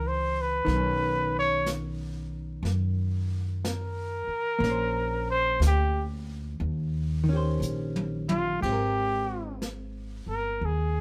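A late-night, romantic jazz ballad in a slow swing, cut from a longer piece, with a band playing live together in one room under moderate studio reverb. A mellow trumpet carries the melody up front, soloing through the first 8.6 seconds with light vibrato, scooped notes and a smooth top. A dark, clean hollow-body electric guitar accompanies with picked, compressed playing, while a woody pizzicato upright bass on steel strings sits close and present underneath. The brushed drum kit enters at 0.7 seconds with dark cymbals, a medium-tuned snare and a boomy kick, and plays a fill just before the music moves into a new section. The harmony drifts through rich extended chords such as Bmaj9, Bbmadd9 and Eb6 before settling on Abmaj9.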